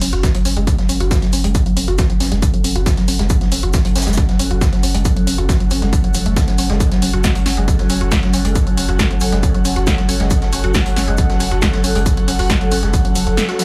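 Dark and driving, this excerpt of peak-time techno in F# minor at 137 BPM pushes an up-front, overdriven electronic kick and a punchy overdriven techno kit over a round sine sub bass, while a squelchy, detuned resonant blip pluck riff pumps with chorus and delay, an airy, breathy pad with phaser drifts in at 1.0 s, a warbling, very quiet dark ambient pad drone arrives at 3.4 s, and a mid-forward vintage acoustic kit with a rolled-off top, hats and shaker sits in the background of a small room ambience.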